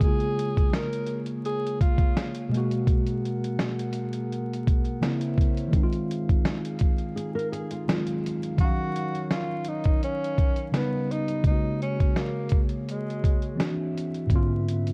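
A breathy tenor saxophone with light vibrato and scooped notes opens this reflective, nostalgic lo-fi hip hop excerpt over a worn, slightly out-of-tune tine electric piano, pure glassy harmonica chords and a gritty, thumpy sampler-style drum kit with a swung feel, before a boxy, thumb-plucked flamenco guitar with finger squeak steps into the break at 7.2 seconds and the tape-echoed saxophone returns at 8.6 seconds, set in a dark small-room production with vinyl crackle.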